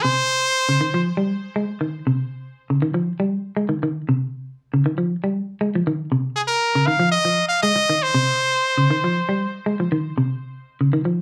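A straight 4/4 afrobeat groove at 118 BPM in F minor drives this defiant excerpt, where a clean, hollow-bodied semi-hollow electric guitar spins fingered arpeggios over an Fm9 chord throughout while a brilliant, punchy trumpet with vibrato and tape echo bursts in up front with a forceful pop-style solo line at 0.0 and again from 6.4 to 9.5 seconds, all set in a wet club reverb.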